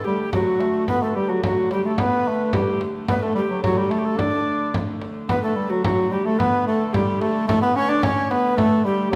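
Festive and rustic, this excerpt is a medieval dance in D major, moving at 109 BPM in a straight 2/4. A warm bass clarinet carries the melody in a classical style, sitting up front as the solo voice. Beside it, a breathy bass recorder plays a second line above it with a woody, straight tone, its tongued notes showing a clear chiff and an expressive touch. In the background, a dark hurdy-gurdy holds a drone from the first moment, its single wheel-bowed player giving a nasal, reedy and somewhat boxy colour with an airy bow. A frame drum struck with hard hands keeps the percussion close and dry, while the whole recording sits in a wet recital hall reverb with a 1.6-second decay, and the phrase repeats once at 5.3 seconds before the cut at 9.2 seconds.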